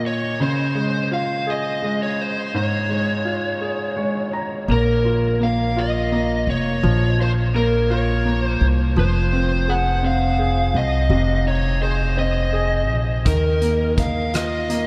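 A slow 6/8 pulse at 56 BPM, counted in dotted quarters, carries this aching, melancholic pop ballad in Bb minor, cut from a longer piece. A clear, polished baby grand piano sits up front with the accompaniment, adding a fill at 3.6 seconds, while a dark, overdriven electric guitar, picked through a small cranked amp with delay, sings the melody close to the listener. A woody upright bass joins at 4.7 seconds, played pizzicato on steel strings and placed up front. Only at 13.3 seconds does a loose indie drum kit arrive with hi-hat, a punchy kick and rim clicks, sounding distant and roomy with a rolled-off top. The harmony moves through Dbmaj7, Bbm, Fm7 and Ebsus2, and a huge ambient reverb soaks the mix in a dreamy haze.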